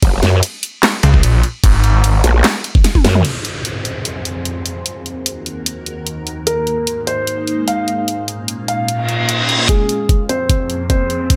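A growling, wobbling bass drives the opening drop of this chaotic, heavy half-time dubstep excerpt in F phrygian at 149 BPM, joined briefly by a snarling, detuned saw bass and pounded out over a knocking electronic kick and a dubstep kit with a huge snare, handclaps, hi-hat, toms and crash, ending in a drum fill and band accent at 3.0 seconds. By 3.2 seconds the basses and kick have dropped out, and at 3.7 seconds an evolving, morphing wavetable pad with phaser, chorus and sidechain pumping takes over under a filter sweep, while a downlifter, reverse cymbal and riser add tension and, from 6.5 seconds, a dark, mellow concert grand piano with delay carries the melody. The kick returns at 9.7 seconds for a build-up as the riser climbs, the chords moving from Gbadd9 through Fm, Ebm, Abadd9 and Bbm back to Fm, all set in a light reverb.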